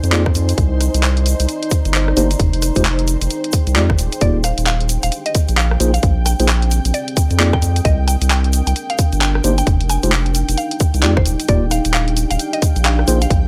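A dry, gritty hardware recording with a digital ambience frames this bouncy, sunny slice of UK two-step garage, taken from a longer piece and moving at 132 BPM in Eb major with a swung 16th-note feel. Up front, a tight, layered electronic kick sits with its studio reverb beside a thick, saturated sine sub bass that holds deep and sustained, while the garage kit adds bright hats, handclaps and rim clicks, and a grainy egg shaker sits in the background. Mellow tine electric piano stabs, clean and heard as if through built-in speakers, outline a cycle of Bb9sus4, Cm9, Fm9 and Ebmaj9. Around them, a moody, full-bodied ambient pad with chorus and sidechain pumping spreads a dark texture, and an ethereal, airy pad holds sustained chords, shimmering with ensemble chorus, tremolo and its own pumping. At 4.2 seconds a woody, round mallet-like synth pluck enters with the melody, its short percussive notes colored by chorus, 12-bit sampler grit and analog delay.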